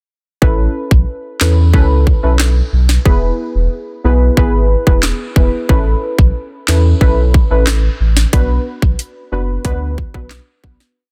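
This is a sunny, bouncy dancehall piece in A major, moving at 91 BPM in a straight 4/4 and lasting about 11 seconds. The electronic drum kit sits up front with an overdriven edge: a tight kick, a sharp snare layered with handclaps, metallic hi-hats and a rim click play a syncopated dancehall beat in which the kick is answered by the snare. Underneath, a full, sine-and-triangle sub bass doubled at the octave plays a syncopated low line with slides, its fast attack and sustained notes sitting up front in the mix. A soft, dark chord stab built from detuned sawtooth, triangle and sine tones supplies syncopated, decaying chords through the progression Aadd9, E, Aadd9 and Bm, coloured by chorus, a filter sweep and sidechain pumping. The sound is dry and densely limited, and the whole piece fades out from 8.3 seconds to its close at 11.0 seconds.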